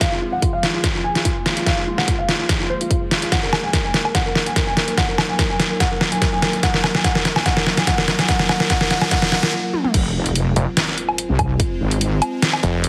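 A heavily compressed, radio-like sound sits in a moderate digital room reverb on this menacing, chaotic wobble dubstep fragment, cut from a longer piece, moving at 145 BPM in a half-time 4/4 feel in F phrygian, tuned to A4 = 435 Hz. It opens as a build-up: a dark, mellow concert grand piano carries the melody through a low-pass filter sweep and digital delay, its action noise giving an intimate, vintage character, while an evolving wavetable pad morphs in the background with chorus and sidechain pumping over chords moving from Fm to Ebm. An up-front dubstep kit with a deep snare, crash, hi-hat, toms and woodblock plays a long drum fill alongside a punchy, layered electronic kick, both re-recorded in a large room, and a very quiet riser creeps in from 5.6 seconds. The piano drops out at 9.5 seconds for a brief break before the drop hits at 9.9 seconds on Fm with an impact. There a heavy, resonant, saturated wobble bass enters with chorus and overdrive, joined at 10.6 seconds by an aggressive, growling distorted saw bass with a moving notch, both up front.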